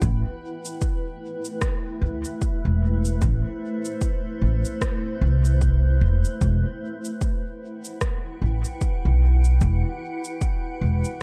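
Ambient dub in a meditative, deep mood, cut from a longer piece, with a swung sixteenth-note feel and harmony moving from Am9 to Em at 6.4 seconds. A woody pizzicato upright bass sits up front beside a deep, overdriven electronic kick drum, while a blurred, evolving granular cloud pad holds mellow sustained chords with slow attacks, long release and its own built-in reverb. Tape-warmed electronic cabasa and rim click, re-recorded in a large room, trail dub echoes through an echo-heavy mix that otherwise stays fairly dry.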